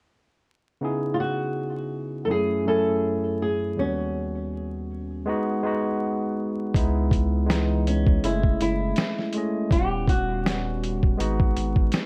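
Vinyl crackle and a moderate studio reverb frame this nostalgic, melancholic lo-fi hip hop cut from a longer piece, swung at 81 BPM in C# minor. A bright, barky tine electric piano opens at 0.8 seconds with filtered, plate-reverbed chords moving through C#m9, F#m9, D#7alt and G#m7, and a fingerpicked flamenco guitar joins at 1.1 seconds carrying the melody through tape echo. At 6.7 seconds a deep, saturated sine sub bass arrives alongside an up-front, compressed, pitched-down sampler-style drum kit with a thumpy kick, medium-tuned snare, hi-hat and 12-bit grit.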